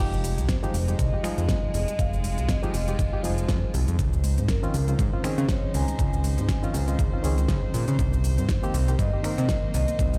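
A fat, detuned analog bass sits up front in this sleek, sensual nu-disco excerpt. Its sawtooth and square-wave tone is thickened by ring modulation and a filter sweep, and it pumps with sidechain compression. The piece moves at 120 BPM in 4/4 with a light 16th-note swing in F minor, and this passage is a drop built on Fm9, Dbmaj9 and Cm7. At 0.5 s a knocking, tape-warm electronic kick joins a pop kit of fat snare, crisp hats, cabasa and finger snaps, and a metallic vibraphone with medium mallets takes up the melody, its ringing notes carrying slow motor vibrato and analog delay. A barky, reedy electric piano heard through its built-in speakers plays accompaniment with sidechain pumping and its own delay, while a gut-string chamber section holds sustained, period-style chords and a very quiet, round analog pluck adds mellow, chorused arpeggios. The mix sounds as if it is played on a big sound system in a bare room, bathed in large studio reverb.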